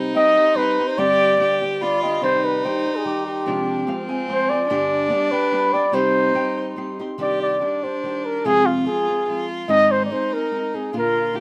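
A small fingerpicked nylon-string guitar, a ringing concert harp playing arpeggios in the background until 8.3 s, and a rich, intimate violin bowed sul tasto with an airy tone on a second line open this proud, festive mariachi fragment in 3/4 at 145 BPM, joined at 0.2 s by an up-front solo trumpet carrying a dark, smooth-topped classical melody with light vibrato over C harmonic minor shifting to C minor at 7.2 s, all in a rough home demo mix with moderate studio reverb.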